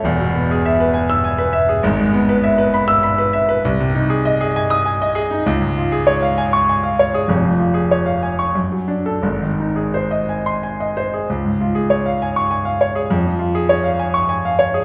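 A clear, smooth grand piano with a vintage tone and short sustain opens this hopeful, warm romantic character piece. It plays alone in a rubato 3/4, ranging from deep bass to high treble as the harmony moves from E chords toward a settled Db around 5.5 s. The piano sits up front while a wet, lingering reverb makes the room feel heard from further back, and a new section begins at 11.3 s before this cut from a longer piece ends at 14.8 s.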